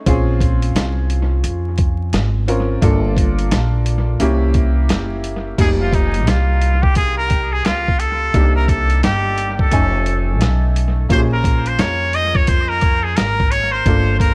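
A swung 87 BPM 4/4 groove from a gritty, compressed sampler-style drum kit with a thumpy kick anchors this mellow, smoky jazz-hop excerpt in F minor, where a woody pizzicato upright bass sits up front, a bright, worn, slightly detuned upright piano moves through chords such as Bbm9 and C7b9, and from 5.6 seconds a nasal straight-muted trumpet takes a distant solo with vibrato, scooped notes and analog delay over an echo-heavy mix dusted with vinyl crackle.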